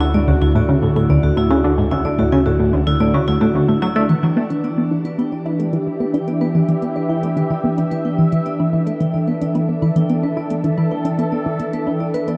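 A straight 4/4 pulse at 110 BPM drives this hypnotic, mysterious stretch of ambient, sequencer-driven space music: a tight, up-front sawtooth synth riff with chorus, phaser and a filter sweep runs beside an airy, evolving pad and ringing, close-miked vibraphone arpeggios trailed by analog delay, each bathed in shimmer reverb within an echo-heavy mix, while a fat, detuned analog bass and a mellow pulsing gated texture sit under the opening Dadd9 until 4.1 s, when the harmony moves to Em7 and faint electronic hi-hat and woodblock fade in far in the background.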